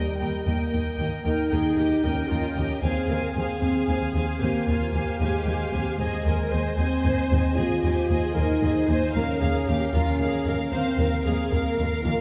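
This cinematic passage in 12/8 at 76 BPM opens with a full accent at 0.0 seconds, as the violins and a dark, tight French horn section sound together in Eb mixolydian. The horns hold sustained chords beneath a rich, distant first violin melody and a focused second violin line with a smooth top, both bowed with vibrato. From 0.2 seconds, cellos and double basses anchor a low Eb: the cellos sit even and in the background, while the close basses play expressively with portamento. Violas join at 1.3 seconds with a soft-attack accompaniment that also glides between notes. The harmony moves from Eb to Fm over Eb and then Bbm over Eb inside a wet concert hall, giving this excerpt from a longer piece an adventurous, triumphant mood.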